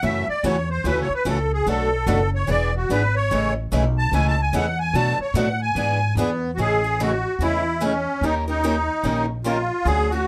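This charming, swinging excerpt of acoustic string swing in the jazz manouche style moves at 147 BPM in A major, with a lilting swung eighth-note feel. A reedy, shimmering musette accordion sits up front carrying the melody, taking a solo across the first 6.6 seconds before the passage moves into a new section. Beneath it, a bright, parlour-sized steel-string guitar and a second picked swing guitar, set further back, supply boxy accompaniment with the crisp snap of fresh strings. A woody, thumpy upright bass, played pizzicato and also up front, anchors the harmony as it travels from F#m7 through Bm7 and E7 to Amaj7, later reaching a D#9. Light reverb gives the small ensemble a cosy sense of space, and the clip is cut from a longer piece.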